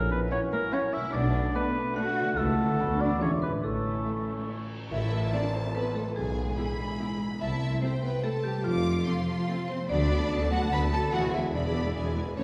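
A playful, whimsical cinematic cue in a brisk 3/4 at 145 BPM, cut from a longer piece, where a woody marimba and a lush, vibrato-rich violin section carry the melody over harp arpeggios and a low bed of tuba, cello and double bass, while a mellow up-front oboe, an airy flute, a dark distant clarinet, bassoon and a tight French horn section fill out the opening before dropping away near 4.7 seconds. A dark cymbal swell with tam-tam builds from 2.4 seconds, and a band accent marks the quirky turn from A major to A minor at 4.9 seconds, all heard from further back in a roomy scoring stage.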